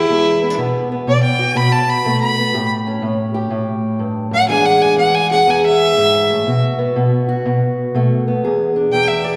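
Soulful and gritty, this acoustic country blues duo swings in 4/4 as a rich, focused fiddle with light vibrato plays the lead from the start, bowing a solo until 8.4 s over a dark, boxy parlour steel-string guitar fingerpicking the accompaniment, both up front within a wet church reverb.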